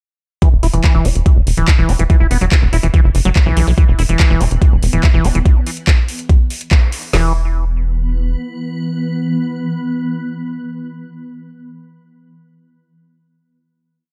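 Overdriven, up-front electronic drums, with a knocking four-on-the-floor kick, woody snare, metallic hats and handclaps, drive this short, hypnotic and alien psychedelic trance piece over a tight, punchy sawtooth sequencer bass rolling in sixteenth notes and a squelchy, resonant acid line with accents and slides through chorus and digital delay, while a swarming, detuned granular drone enters at 4.6 s and carries the final chord from 7.1 s in a dark digital ambience.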